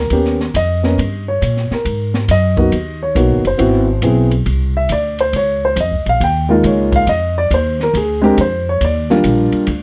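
Piano and upright bass open this short jazz piano trio cut together, with the drums joining a moment later at 0.1 seconds, and all three play through to 9.8 seconds. The mood is warm and sophisticated, swinging at 138 BPM in 4/4 with a lilting triplet feel on the eighth notes. The dark concert grand carries the melody as a solo between G3 and G5, its tone mellow, smooth and vintage, with deep bass and short sustain, sitting up front in the mix. Beneath it, the pizzicato upright bass on gut strings sounds woody and thumpy, also placed close and forward, ranging from Gb1 to Bb2. The open kit sits further back, mixing hi-hat, ride, snare and kick, with dark cymbals, a high-tuned snare and a boomy kick in a small-room sound. The dry, close 1970s-style studio recording moves through rich harmony such as Eb7b13, Abm9 and Db69 before settling on Ebmaj7.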